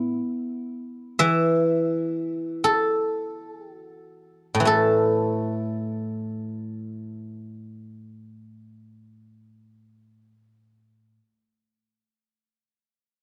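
In free time, this elegant, pastoral fragment of Chinese traditional solo plucked-string music features a lone acoustic guzheng played with fingerpicks, its bright, silvery, ringing tone sitting up front across a range from A2 to E5, easing into a slowdown over the opening 4.7 seconds before moving into a new section that runs to 9.6 seconds, all captured in a dry, close, 1970s-style studio sound.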